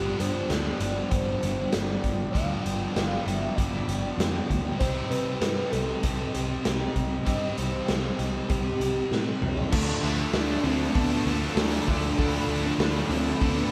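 A shoegaze and dream pop take on rock, this short cut from a longer piece feels blissful and hazy, moving in a straight 4/4 through G7, Cm and Dm harmonies. A velvety sawtooth synth lead carries the melody with chorus, analog delay, vibrato and portamento, while a hollow, flute-like pad holds soft sustained chords in the background. Two guitar riffs stack beneath it: a biting overdriven guitar washed in reverse reverb and a thick fuzz guitar set back in the mix with lush chorus. A foam-muted, round electric bass anchors the low end, and a raw garage drum kit sits up front with a punchy kick, gritty saturation and a rolled-off top, entering at 0.2 s. After a drum fill at 9.1 s, a bright, double-tracked distorted guitar joins the riffs at 9.7 s, all inside a moderate echo chamber reverb.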